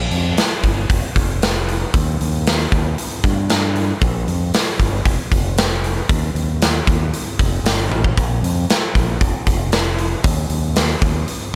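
A straight 116 BPM classic rock groove in 4/4 sets a brooding, gritty mood, as a growling, bright, overdriven fingered electric bass opens at 0.0 seconds, joined at 0.1 seconds by a big, natural-sounding acoustic drum kit with a punchy kick, medium-tuned snare, hi-hat and toms that sits up front in a roomy space, with a drum fill at 7.9 seconds and light reverb over this short cut from a longer piece.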